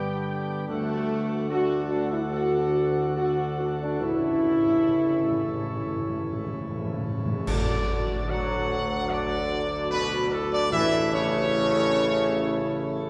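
Majestic and triumphant, this classical ceremonial fanfare, cut from a longer piece, sets a warm, lightly vibrato trumpet section up front on the melody over sustained chords from a full chamber organ principal chorus with chiff, a mellow, punchy French horn section and a dark, soft-edged trombone section in the background, all grounded by a roomy tuba bass, while round soft-mallet timpani enter with a fill at 4.0 seconds and dark clash cymbals with concert bass drum land a band accent at 7.5 seconds, the whole bathed in a wet cathedral reverb.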